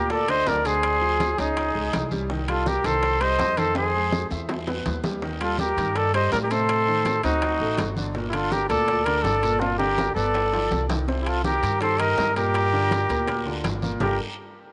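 Afro-Cuban jazz in G minor at 164 BPM, sultry and driving, with an up-front trumpet carrying the melody with vibrato over an airy, reedy flute second line, short-sustained baby grand piano chords, woody pizzicato upright bass, and a bed of damped congas, tight high-tuned bongos, ringing metal-shell timbales and raspy guiro, with drum fills from 3.8 to 5.2 seconds and 9.6 to 11.1 seconds, all in light small-room reverb.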